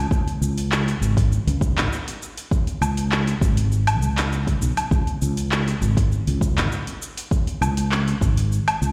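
Played through a big sound system in a bare stone room with light reverb, this short cut from a longer organic downtempo piece moves at 100 BPM in a straight 4/4, tuned to A4 = 439 Hz, with an earthy, peaceful mood. A dark, round fretless electric bass sits up front in its low register from the opening, joined at 0.1 seconds by a layered, overdriven deep house kit of cabasa, handclaps, woodblock and metallic hi-hats. A deep, overdriven electronic kick plays alongside until 8.3 seconds.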